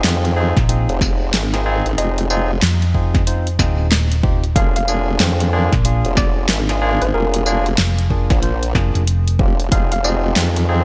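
Bright, 1980s-style digital production with light reverb frames this swaggering, funky glitch hop excerpt, swung on the sixteenths and moving from Fm7 to Bb7/F and back. Up front, a saturated, chorused formant-sweep wobble bass and a dark, round hollow-body fingered electric bass, which joins at 0.6 s, carry the low end, while a punchy, layered electronic kick, also from 0.6 s, joins a pop kit with a fat snare, hi-hat, tambourine and gated reverb. A barky tine electric piano, lightly overdriven through a combo amp with sidechain pumping and digital delay, plays stabs, and a mellow, woody wave-folded pluck with chorus and delay carries the melody in the background.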